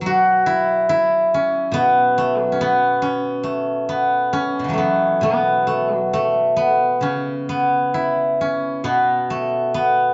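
Bathed in the wet reverb of a recital hall and dulled above the upper treble, this short, flowing, serene fragment of Chinese traditional solo music features an up-front acoustic steel-string zither, played with fingerpicks, whose silvery, ringing low and middle notes unfold in a free, rubato pulse across its 10.1 seconds.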